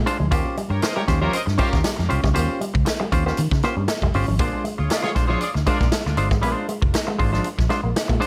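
Energetic and funky, this short cut from a longer piece moves in a straight four-beat pulse over a chord change from Eb13 to Bb9. A bright, twangy electric guitar played through an envelope filter picks a low riff, sitting a little back in the mix. Underneath, a dark, round vintage electric bass with a foam-muted, amped tone carries the low end, while a clean, hollow-bodied semi-hollow electric guitar fills in the accompaniment with a compressed, fingered touch. A big-band drum kit, recorded naturally in a big room, sits up front with a punchy kick, a medium-tuned snare and hi-hat. From 0.7 to 5.9 seconds, a distant, pop-style horn section plays a second line with light vibrato and tape echo, and light reverb gives the whole mix a sense of space.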